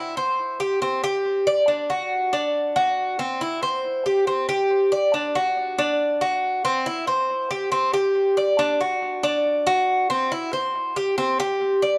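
In a straight, danceable four-four, this sunny Latin fragment features a solo Cuban tres, picked on its metallic double strings with some courses doubled at the octave, sitting up front with analog delay and a light reverb across its 12 seconds.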